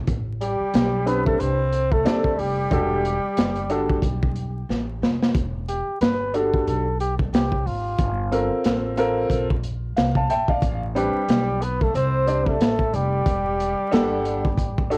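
This jazz-hop excerpt has a smoky, mellow mood, cut from a longer piece and set in a swung 4/4 over a cassette-tinged home recording with vinyl crackle and a moderate booth ambience. An upright bass starts at 0.0 s with woody, thumpy pizzicato on gut strings, and a crunchy breakbeat kit follows, its saturated hi-hat, tight kick and medium-tuned snare sitting up front with a rolled-off top and the grit of cassette tape. A trumpet with a bucket mute carries the melody in a veiled, vintage jazz voice with vibrato and scooped notes, trailed by analog delay. A growling tenor saxophone plays a breathy, raspy second line from 0.4 to 4.7 s and returns at 11.0 s. A boxy concert grand piano with deep bass and long sustain comps through minor eleventh chords, adding a fill around 9.6 s after a drum fill links the two passages.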